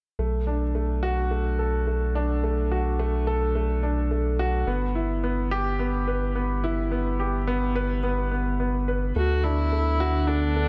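A melancholic, moving piece of piano and strings electronica, heard here as a short cut from a longer work. A clear, slightly worn concert grand plays a riff touched with tape echo over a round, deep analog bass, both up front from the start as the chords move from Bm7 through G6. At 9.2 s, on a D6 chord, a reedy, gut-toned viola enters with the melody while a thick, warbling pad with chorus holds sustained chords softly in the background, all set in a dark production with a moderate concert hall reverb.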